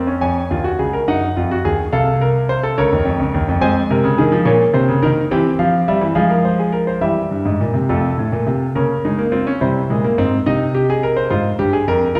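A solo concert grand piano, smooth and up front with a deep bass and a vintage tone, plays a driving, serious baroque-style four-part classical fugue in Bb minor at 70 BPM in a straight 6/8, its short-sustained notes ringing into a reverberant recital hall as the harmony moves through Eb minor and F minor before a new section from 7.0 seconds leans on C and F chords and settles on F minor at the close of this excerpt, cut from a longer piece.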